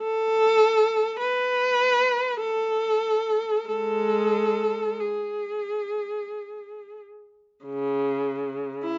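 Classical and free in spirit, this brief excerpt presents a solo viola alone, unfolding in a meditative, yearning mood across about 9.0 seconds. The rich, bowed tone comes from one player heard close and up front, with soft attacks, vibrato and portamento that give each phrase an expressive quality. The line moves in a flexible rubato within triple metre, ranging from C#3 up to B4. A light reverb surrounds the instrument, and the sound stays mellow, with its upper edge rolling off before the brightest frequencies. The opening passage gives way to a new section at 7.6 seconds, and the fragment ends soon after, cut from a longer work.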